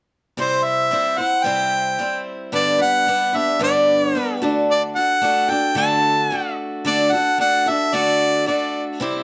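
Rock in a nostalgic, hopeful mood, this short cut from a longer piece moves in a straight four-beat feel. A clear, punchy harmonica carries the melody in a pop style, sitting up front as the solo voice from 0.4 seconds. Beneath it, a picked acoustic guitar in a swing style supplies the accompaniment, its bright, boxy tone marked by audible finger squeak. The guitar also sits forward in the mix but a little lower than the harmonica, and it rings on briefly after the harmonica stops at 8.8 seconds. The harmony steps from C to G to D, all set in a moderate studio reverb that lends the pair a sense of room.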